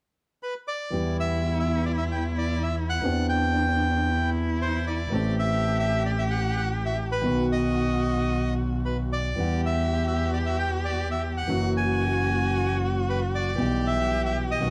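A rubato tango in four, this melancholic, tense passage, cut from a longer piece, opens with a reedy, airy bandoneon carrying the melody up front at 0.4 s. The rest of the ensemble joins at 0.9 s: a bowed cello with vibrato, soft attack and expressive portamento as the second line, and an intimate, vintage-toned concert grand with deep bass and audible action noise as accompaniment. Beneath them, a single bowed double bass sounds biting and intense with vibrato, all set in a moderate studio reverb.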